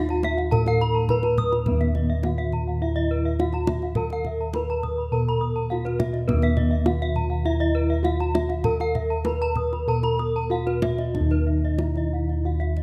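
Dark, round bossed gongs sit up front and carry the bass of this ceremonial, shimmering Balinese gamelan passage, cut from a longer piece, while a bronze metallophone struck with a wooden mallet plays the melody with a slapback echo and a boxy, small-room tone. Two brighter metallophones played with horn mallets ring out arpeggios above, one of them airy, and their paired tuning produces shimmering beats as a tight kendang, struck with hard hands, enters at 0.1 s. Captured with close, detailed microphones and light reverb, the straight 4/4 music shifts into new sections at 1.7 s and 11.2 s.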